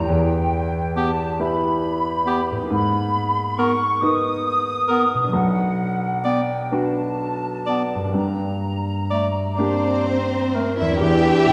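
Cinematic, emotional orchestral film score in E minor, slow and rubato in 6/8 at around 41-47 BPM and moving and longing in mood, where a clear, deep-bassed concert grand piano up front carries the accompaniment and a ringing, thumb-plucked harp adds arpeggios beneath pure, expressive flutes, a present solo clarinet and a warm, close-miked cor anglais on second lines. They are joined at 9.6 seconds by focused violins on a second line and expressive cellos on the bass, then at 11.0 seconds by a lush, distant violin melody, very quiet dark violas, mellow sustained French horn chords and smooth double basses in the background, within a wet scoring-stage reverb heard from further back in the room.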